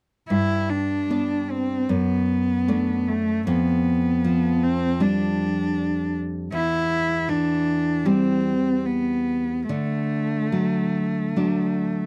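From 0.3 s, a rich, smooth, even bowed cello with vibrato sings a warm, lyrical melody over fingerpicked nylon-string classical guitar with fresh strings, both up front in this romantic G major duo at 77 BPM, moving with a rubato pulse through G, D/F#, G7/F, C/E and D in a dry, close 1970s-style studio sound cut from a longer piece.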